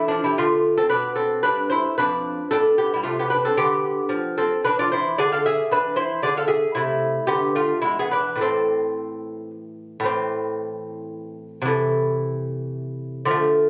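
Captured on a phone in the room, this recording carries a studio ambience and a moderate recital-hall reverb that gives each note a soft trail. A solo lute plays a grave, introspective baroque-style dance in triple time, and the whole clip is cut from a longer piece. The instrument sits up front, its gut-strung courses producing a mellow, delicate sound, with some strings doubled at the octave and the fingerpicked lines spanning E2 to F5. The pulse is rubato, bending as the harmony moves through diminished and dominant colours toward an arrival on A minor at 8.4 seconds. The opening section then returns at 10.1 seconds, and the recording ends at 13.7 seconds.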